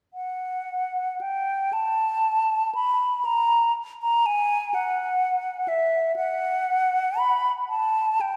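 The rhythm moves in a slow, free 6/8, with the pulse drifting around 37-42 BPM in dotted quarters and bending under rubato. This is a brief classical fragment, cut from a longer piece, for unaccompanied concert flute, and its mood is yearning and mournful. The flute sings alone from 0.1 to 8.4 seconds within the narrow span of E5 to B5, its tone pure and hollow, with vibrato and clearly tongued notes. Close-miked and up front, the instrument feels intimate even as it sits inside a wet church reverb that rings for about 2.7 seconds. The resonant space lets each phrase hang in the air, deepening the lonely, searching character of the line.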